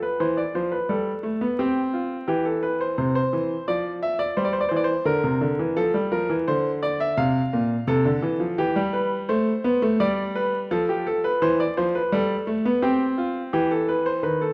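Vinyl crackle sits over a moderate recital-hall reverb as a clear, smooth grand piano plays up front with a vintage tone and short sustain, alone from 0.0 to 14.5 seconds. This baroque-style two-part invention moves at 85 BPM in a straight 4/4, stately yet lively, spanning Bb2 to F5 as the harmony passes through C/E, F and G7 before settling on C. It is cut from a longer piece.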